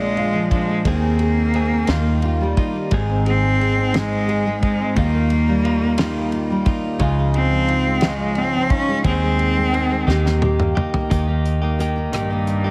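Heavily compressed with a radio-like sound, light reverb and small-room ambience, this excerpt of a romantic, swaying six-eight pop ballad at 58 BPM sets a clear, bowed cello melody with vibrato up front over double-tracked, fingerpicked nylon-string guitar with finger squeak, clean direct-recorded electric guitar arpeggios through spring reverb, a round, foam-muted vintage fingered bass, and a dry, damped 70s drum kit with a fat snare and tight kick, whose fill at 10.1 s leads into a new section at 11.1 s.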